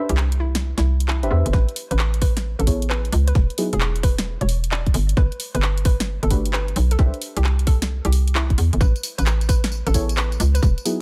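A bouncy, punchy FM bass with a hollow, knocking tone sits up front in this soulful, sunny two-step UK garage excerpt at 132 BPM, swung on the 16ths and moving through chords such as Cmaj9, Aadd9, E and Gadd9. Soft, deep and dark detuned chord stabs carry chorus and a cassette-tape colour, while a mellow square-wave pluck with a sub octave, filter sweep and dub echo plays the melody. A tape-warm garage kit of cracking snare, handclaps, hi-hat and tambourine runs throughout, and a tight electronic kick punches in at 1.5 seconds after the opening break, all set in a digital ambience.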